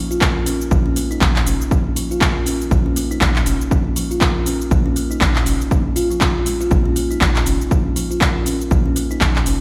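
Afro house at 120 BPM in Bb minor, this short cut from a longer piece feels driving and warm, with a swung 16th-note lilt and a single Bb minor chord throughout. A bright, woody kalimba sits up front from the start, its hollow-box tone and thumbnail pluck ringing out in arpeggios between F3 and Bb4, colored by delay and sidechain pumping. An up-front afro-pop drum kit joins almost at once with handclaps, shaker and metallic hats, and a punchy, layered electronic kick drum with a tape-warm character drives the beat from 0.2 seconds until 9.3 seconds. A round, sine-like sub bass enters at 0.7 seconds, deep and sustained with a fast attack, pumping beneath the others between F1 and Bb1. Light reverb gives the mix the sense of a big sound system playing in a bare stone room.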